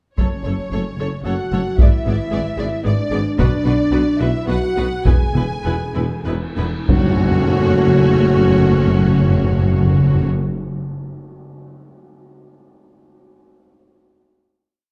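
A dark, warm production set in a reverberant recital hall carries this short, epic and dramatic cinematic piece in F# minor, moving in 3/4 at 95-113 BPM and slowing from 2.6 seconds before landing on a final chord at 6.9 seconds with a full-ensemble accent. Clear, distant violins carry the intense vibrato melody over repeated notes while a second, smooth violin section doubles the tune in thirds and at the octave, as lush violas, focused cellos and double basses, a very quiet punchy tuba and a tight horn section fill out sustained chords and bass lines. Up-front taiko strokes with heavy sticks drive the theme until 8.1 seconds alongside dry single timpani strokes on the bass notes, with background cymbal swells and gong strokes from the tam-tam.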